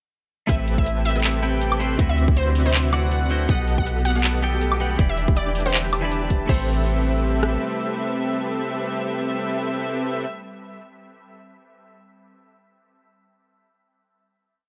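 Future bass at 160 BPM in A minor with a half-time, lightly swung feel and a bittersweet, dreamy mood, built around a drop from 0.5 s to 6.5 s where up-front trap drums with a hard-clipped kick, rim clicks, metallic hat rolls, claps, woodblock and crash drive a boomy 808-style bass, while a huge, detuned supersaw with 12-bit sampler grit throbs in syncopated chord stabs, a punchy unison pluck repeats a riff melody through dub echo, a twangy clean electric guitar holds spread chords with syncopated pushes, and an airy chorused lead doubles the chords in the background, with the bass, supersaw, pluck, guitar and lead pumping with sidechain over a faint ethereal pad that enters at 1.9 s and a very quiet, dark, round pluck arpeggio, before the Am9, D13, B7b13 and Em7 progression resolves into a final Am9 chord at 6.5 s in light digital reverb.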